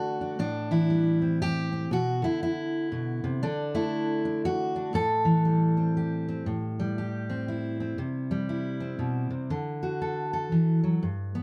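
A full-bodied, jumbo-sized fingerpicked steel-string acoustic guitar sits up front and plays alone in this melancholic, wistful solo folk passage, cut from a longer piece, moving at 119 BPM in a swung 3/4 in A dorian through chords such as Am7, Bm, D, C and Dadd9, with a shift to a new section at 6.5 seconds, all set in a moderate studio reverb.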